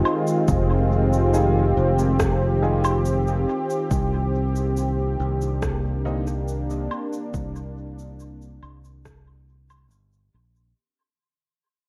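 A smooth, detuned sawtooth pad with chorus opens this spacious, deep ambient dub excerpt, holding sustained Fm9 and Cm9 chords up front while an overdriven electronic woodblock, shaker and rim click ring out through dub echo and a large room. A bright, growly fingered electric bass with tube saturation and a punchy, layered, overdriven electronic kick drum enter at 0.5 seconds, and a very quiet, woody, vintage upright piano adds slightly detuned stabs with long sustain from 1.3 seconds. The straight 4/4 groove sits in a moderate echo chamber reverb alongside vinyl crackle, fading out gradually from 1.6 seconds to the end.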